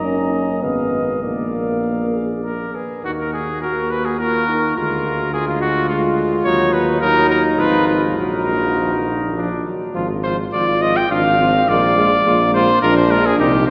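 Bathed in a long, wet cathedral reverb, this solemn and heroic classical brass quintet excerpt in Eb minor moves in a rubato 3/4 at roughly 98-109 BPM, with a soft-attacked, vintage-toned cornet carrying the melody up front over a mellow trumpet second line, while a close-miked French horn and a warm euphonium, both with light vibrato, sit in the background as accompaniment and a smooth-topped tuba anchors the bass up front.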